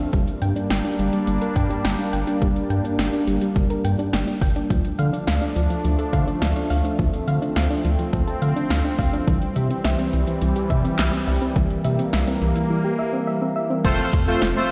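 Bright and nostalgic, this synth-pop excerpt rides a straight 4/4 groove from an up-front, overdriven deep house drum kit with a deep kick, punchy snare, metallic hats, handclaps and crash, under a round, nasal analog bass and an evolving, detuned sawtooth pad holding sustained chords with chorus. A soft, gentle pluck with a short decay spins chorused arpeggios through an analog delay over a Gm, Dm and C progression, all set in a lush hall reverb that sounds like a big system in a bare room. At 13.8 s the pluck stops as the harmony lands on F, and a bold, fat analog synth brass with vibrato bursts in up front for the final moment.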